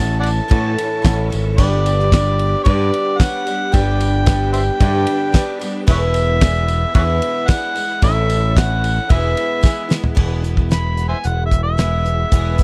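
A straight 4/4 groove from a damped 70s drum kit with a fat snare and tight kick, alongside a bright, punchy picked electric bass, drives this jangly, nostalgic folk-rock and heartland-rock excerpt, where a shimmering, octave-doubled twelve-string acoustic guitar with finger squeak and a woody upright piano sit beneath a gritty, overdriven harmonica melody, while a very quiet tonewheel organ with chorus vibrato and fast rotary speaker and a jingly vintage tambourine hover in the background, and during a drum fill from 9.6 seconds the piano and tambourine stop as the harmonica takes a solo from 10.2 seconds, all in a dry, close 1970s-style studio sound.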